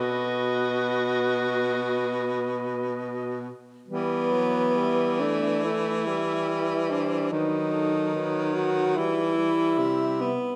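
In a flexible, rubato 4/4 that drifts between 58 and 75 BPM, this classical piece for saxophone quartet unfolds in E minor with an elegiac, yearning mood. The mellow soprano saxophone carries the melody with vibrato and a smooth top, though it sits in the background. The clear alto saxophone is close-miked and up front, voicing a second line beneath it. The tenor saxophone adds warm, vibrato-touched accompaniment from a distant, roomy position, while the bright baritone saxophone anchors the bass up front, also with vibrato. Harmony moves from B to E minor at 3.9 seconds, where a new section begins, and passes through B/D# before settling back on E minor, all inside a moderate recital-hall reverb. This passage is cut from a longer work, with the alto playing on alone until 10.6 seconds after the other three stop at 10.3.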